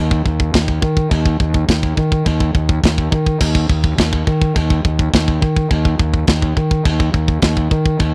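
A straight 4/4 pulse sets up this dark, aggressive heavy metal fragment, with a tight metal drum kit entering just after the start and hitting kick, snare, crash and china cymbal, its medium-tuned snare and rolled-off top sitting up front. Beside it, a fingered electric bass growls through overdriven fuzz, bright and punchy, playing the low part for the full 8.1 seconds. The sound is dry and close, like a 1970s studio recording with little reverb.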